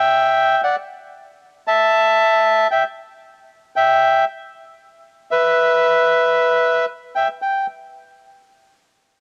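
A band-limited, vintage home cassette recording with studio reverb carries this dramatic, tense tango fragment in E minor at 115 BPM in a free rubato 4/4, where a reedy, up-front solo bandoneon plays from the start until 7.7 seconds in the range B4 to A5, opening on an E minor chord before the harmony falls away at 1.2 seconds.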